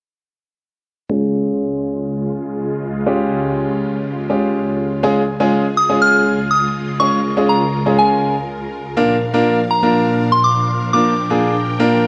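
A clear, up-front concert grand piano and a vintage, warbling string-machine viola pad with phaser and ensemble chorus open this carefree, euphoric pop passage together under a filter sweep, before a pure, mellow FM synth bell with chorus, tremolo and digital delay carries the melody from 5.8 seconds, all set in a lush hall reverb.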